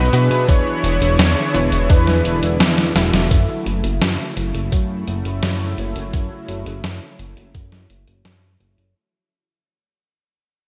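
A bright, lush 1980s-style digital sheen with a moderate hall reverb frames this moody, nostalgic synthwave excerpt in F# minor at 85 BPM, where a thick, bold unison lead with vibrato and delay sings briefly over a smooth, detuned pad with sidechain pumping, a very quiet nasal pluck arpeggio, dark, brassy stabs in the background, a glossy chorused pulse-wave bass up front, and a detuned 8-bit drum machine with a medium-tuned snare, gated reverb and a thumpy kick that enters at 0.5 seconds, before a drum fill at 2.8 seconds gives way to a filter sweep and fade-out from 3.3 seconds.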